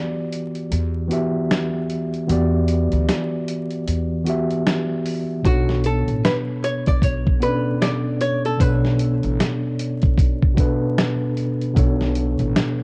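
A hollow-body archtop guitar picks a clean, compressed melody from 5.5 to 11.0 seconds over a mellow tine electric piano with cassette-tape colour, woody pizzicato upright bass on gut strings, and a gritty, sampler-style drum kit of thumpy kick, snare, hi-hat and finger snaps in this nostalgic, reflective lo-fi hip hop excerpt at 76 BPM in B minor, which moves from Em9 to Bm9 at 5.4 seconds under vinyl crackle, light reverb and a dusty home-cassette haze.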